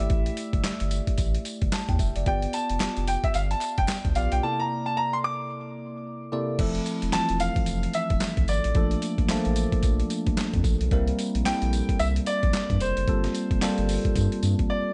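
A clear concert grand piano carries the melody from the start over a bell-like tine electric piano with phaser, a round analog bass and a gritty, compressed sampler-style drum kit with a thumpy kick, medium-tuned snare, handclaps, hi-hat, tambourine and crash cymbal, setting up a confident, punchy new jack swing groove with a swung sixteenth-note feel. A very quiet, crisp group handclap slips in from 2.8 to 4.0 seconds, a break arrives at 4.4 seconds, and the harmony moves from A7sus4 and G7 through C13 into a second passage of Fmaj7, Bbmaj7, C7 and Gm11. The sound is dry, with the piano, electric piano and drums up front and the dark, sustained bass underneath, in this cut from a longer piece.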